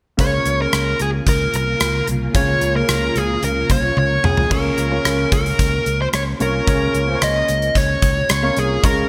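A dark, overdriven lead guitar carries the melody up front over gated, punchy drums, a round fretless bass and an intimate grand piano with audible action noise and analog chorus, while a cloudy, detuned granular pad drifts in the background from 1.2 to 4.5 seconds, and a drum fill at 4.0 seconds ushers in the second half of this glossy, nostalgic 1980s-style pop fragment.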